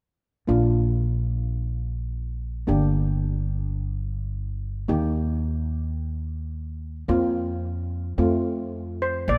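Calypso in Bb major at 109 BPM with a light sixteenth-note swing, this festive, carefree excerpt has a dark, smooth double-seconds steel pan played with medium rubber sticks comping through Bb, Gm, Eb, Fsus4 and F over a woody, thumpy pizzicato upright bass on gut strings, both from 0.5 s, until a bright, shimmering lead pan struck with hard rubber sticks enters at 9.0 s, all set in light reverb within a rough home demo mix.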